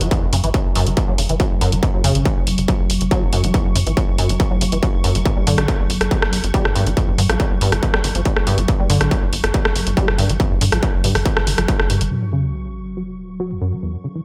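A driving, straight 4/4 pulse at 140 BPM anchors this dark, industrial peak-time techno excerpt, where a distorted, up-front kick and a large-room techno kit of hi-hat and rim click under low-passed hats and gated reverb push beneath a squelchy, resonant acid saw riff carrying a filter sweep, chorus and delay, a punchy wave-folded sequencer bass and a swarming, detuned granular drone in the background. The riff, bass and drone all pump against the kick over F#5 and G5 chords in bright 1980s-style digital sheen, until the kick falls away just before 12.1 seconds and the kit and bass drop out there for a sub-drop impact.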